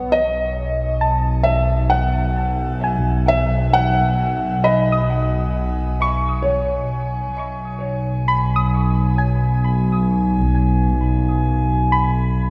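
A felt-muted upright piano opens this luminous, peaceful ambient piece with a mellow, intimate melody in shimmer reverb and tape echo, over a dark, bowed symphonic double bass section placed up front, while an ethereal glass harmonica fades in from 0.1 seconds in the background. From 1.0 seconds a soft, round pluck adds chorused arpeggios with shimmer reverb and tape echo, and the piano stops at 7.3 seconds as the harmony moves from Badd9 to G#m/B. A lush hall reverb surrounds the dark, warm production.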